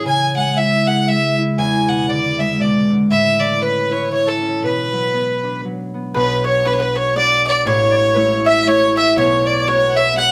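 Wild and spirited, this Celtic folk waltz moves at 119 BPM in a swung 3/4 in B dorian, with a single clear, focused fiddle bowing the melody up front with light vibrato. A reedy, hollow accordion plays a second line while a bright, ringing, fingerpicked concert harp accompanies prominently, and at 6.1 seconds a mellow, round mandolin with double strings adds another picked line in the background. The band plays live together in one room with moderate studio reverb, in an excerpt cut from a longer piece.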